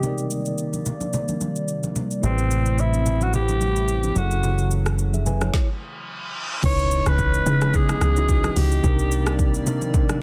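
A dry, dense and heavily limited mix opens this soulful, hypnotic amapiano excerpt at 109 BPM, where a raspy, growling alto saxophone carries the melody through a low-pass filter and tape echo over a mellow tine electric piano, a hollow, flute-like pad with chorus and sidechain pumping, bright vintage congas in the background, and an up-front electronic afro-pop kit with a deep kick, metallic hats and a woody snare given soft clipping. A punchy, funky analog bass plays from 2.2 to 5.5 seconds before a stop, and a filter sweep and reverse cymbal lead into the drop at 6.6 seconds, where an impact lands and a deep, round, dark log drum bass takes over. The chords move through Cm9, Am9, F#m9 and C#m9 before returning to Cm9.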